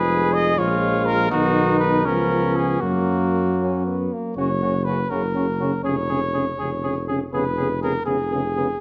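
A mellow trumpet carries the melody up front in this solemn, grave classical brass quintet excerpt in F# major, moving with rubato in 6/8 at about 81 dotted-quarter beats per minute, joined throughout by a clear, distant flugelhorn on the second line, a vintage-toned French horn and a smooth-topped trombone with vibrato accompanying in the background, and a soft-attack tuba anchoring the bass up front, all captured with close, detailed microphones in a moderately reverberant recital hall.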